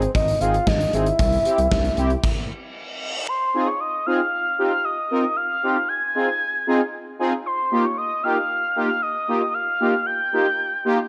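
Bathed in a moderate plate reverb, this cool, driving synth-pop excerpt in F minor at 115 BPM opens with a gated 80s drum kit with a punchy kick and smooth synth bass beneath a round, dark octave-layered synth lead melody and nasal analog synth brass accompaniment, both treated with chorus; the bass and drums drop out by 2.4 s, an electronic reverse cymbal sounds from 2.5 to 3.3 s, and the lead and brass then carry on alone over Fm7 and Ebadd9.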